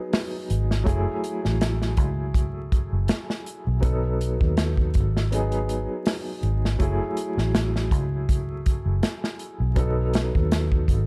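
Trip hop with a cinematic, hypnotic mood and a lightly swung groove: an intimate, woody upright piano with audible action noise and long sustain comps through minor-seventh and ninth chords, colored by tremolo, tape echo and gritty 12-bit sampler texture. An airy, up-front acoustic drum kit with a punchy kick and medium-tuned snare joins at 0.1 seconds, and a round, foam-muted fingered electric bass with a dark, amped tone settles in underneath from 0.5 seconds. The production is dark with vinyl crackle and a light small-room reverb, in a brief cut from a longer piece.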